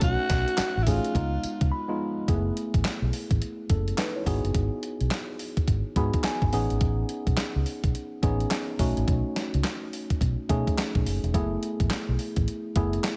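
A breathy, raspy alto saxophone with delay leads the start of this confident, punchy new jack swing excerpt at 106 BPM in F# dorian, playing only until 1.7 s before a brief break, while a mellow, slightly out-of-tune tine electric piano adds fills over a dark, round muted fingered bass and a crisp 8-bit drum machine with thumpy kick, fat snare, handclaps, hi-hat and tambourine, all swung on the 16ths through chords moving from B9 to F#m11, G#m7 and Amaj9#11 in a dry, up-front mix.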